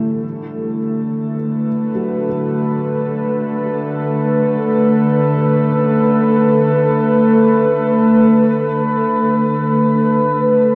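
The recording is soaked in a huge, wet reverb with a 7.7-second tail, giving this dreamy ambient fragment, cut from a longer piece, a serene and warm mood. It floats in free time, tuned to A4 = 444 Hz, and rests on a G69 chord from 0.0 seconds. Up front, a warbling, tape-like pad holds sustained chords with a slow attack and long release. Its detuned sawtooth and triangle tones sound nostalgic, lo-fi, dark and full-bodied, thickened by chorus, its own reverb and a shimmer reverb. In the background, a felt-muted upright piano plays soft, mellow arpeggios, with thick felt and audible action noise giving it an intimate, muted character, colored by subtle chorus, tape echo and shimmer. The piano fades out across the full 10.8 seconds while the pad sustains.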